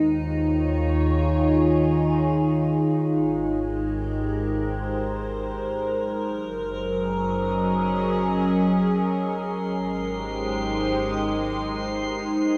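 In free time and Ab major, this serene ambient fragment cut from a longer piece sets an evolving, detuned wavetable pad up front on sustained chords moving from Eb9sus4 through Abmaj9 and Gb6, over a deep, ominous rumbling drone in the bass, with a glassy, bright texture of drifting overtones entering at 9.5 seconds, all soaked in a cathedral reverb and a dreamy cassette-tape haze.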